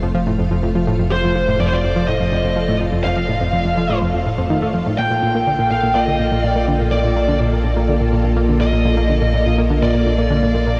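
Bathed in a huge ambient reverb and the worn, warbly pitch drift of old cassette tape, this cosmic, expansive fragment of sequencer-driven space music moves at 124 BPM in a straight 4/4 in Bb major, shifting from F to Bb at 5.0 seconds. A lush, vintage string machine holds slow-swelling sustained chords through ensemble chorus and shimmer reverb, while a round, bright analog pluck repeats a low riff through chorus and analog delay above a deep sine sub bass with transformer saturation. From 1.1 seconds, a dark, distorted high-gain lead guitar sits up front with a picked melody, trailed by shimmer reverb and analog delay.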